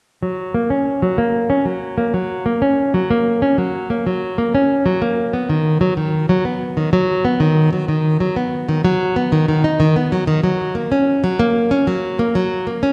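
A nylon-string guitar opens the recording at 0.2 seconds, fingerpicking arpeggios in F# major. It's a playful, delicate folktronica fragment at 94 BPM in a straight 4/4, cut from a longer piece. The guitar is the only part and sits up front, with fresh strings giving it a full-bodied, deep classical tone. A low-pass filter sweeps across the guitar through the whole passage, while digital delay adds echoes to the picked notes. Everything is bathed in a lush scoring-stage reverb with a 1.5-second tail, and lossy compression artefacts leave a faint grit before the guitar stops at 12.9 seconds.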